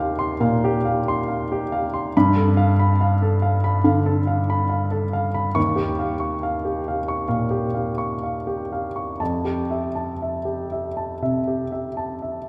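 Hazy and dreamy, this short cut from a longer impressionist classical piece is for solo grand piano, moving in a loose, rubato 4/4 at roughly 58-72 BPM. The piano plays alone throughout its 12.5 seconds, spanning Eb2 to Db6 with a clear, polished tone, and the mechanical noise of its action is audible. Its harmony drifts through lush extended chords: Eb69 at the start, G9 at 2.1 seconds, Eb9 at 5.6 seconds, and Fmaj9 at 9.2 seconds. A wet concert hall reverb with a long 2.2-second decay surrounds the instrument. The listener seems placed further back in the room, so the sound is spacious.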